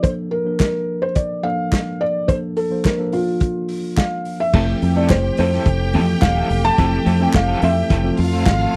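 A felt-muted upright piano carries the melody up front, its dark, intimate tone softened by thick felt, with the action noise audible beneath each note. This short cut from a longer piece is a celebratory, danceable disco groove at 107 BPM in straight 4/4, in F major and tuned a little sharp to A4 = 445 Hz. A worn, slightly out-of-tune tine electric piano plays mellow accompaniment. A muffled, lo-fi vintage drum kit sits close, with dark cymbals, a tight kick and a medium-tuned snare, and crisp group handclaps join in the background from 0.6 s. Over a move from Bbmaj7 to Fmaj7 at 4.5 s, the arrangement fills out: a round, foam-muted fingered bass, a slightly broken-up electric guitar with tremolo, a lush bowed string section playing a second line, and a warm French horn section holding sustained chords behind everything else. The sound is dry and close, in the manner of a 1970s studio recording.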